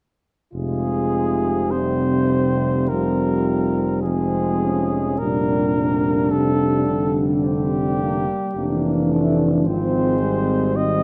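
A dark production with moderate scoring-stage reverb frames this yearning, melancholic brass-band hymn, cut from a longer piece and moving in a free rubato over a slow harmonic shift from F minor through a diminished chord. A mellow cornet carries the melody with vibrato from 0.5 seconds, supported by a French horn section on a second line, while a soft-attacked, close-miked euphonium and, from 0.6 seconds, a clear, lightly vibrating trombone section fill out the accompaniment in the background. Beneath them, a warm tuba holds the bass with a distant, roomy presence.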